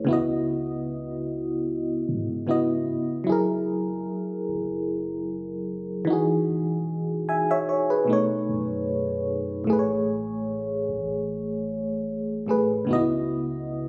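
Contemporary R&B with a late-night, sensual mood, this short cut from a longer piece moves at an unhurried pace with a gentle sixteenth-note swing. An FM electric piano with tremolo sits up front, its mellow tone carrying a faint noise layer and notes that strike quickly and then decay as it spells out lush extended chords such as C#m11, F#9 and Emaj9. Beneath it, a soft 808-style bass stays in the background, its round, sine-like low end dark and decaying. Around 9.7 seconds the harmony shifts to a new passage on Amaj7 before returning to C#m11 near the close. The sound has the character of a phone recording made in the room, with club reverb, light digital ambience and compression giving it a hazy, intimate feel.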